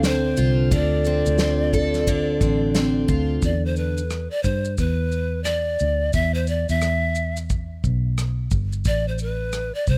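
A breathy bamboo pan flute carries a tender, reflective acoustic pop melody at 88 BPM in a gently swung 4/4, with a chiffy attack and expressive vibrato over a bright, shimmering, octave-doubled twelve-string acoustic guitar that stops at 4.0 s. A dark, round, foam-muted electric bass sits up front beside an unplugged small-room drum kit of punchy kick, rim click, shaker and snare played with bundle sticks. The harmony moves from a D minor seventh to an E seventh at 3.4 s before the chords fall away at 8.9 s, all in a dry, close-sounding space.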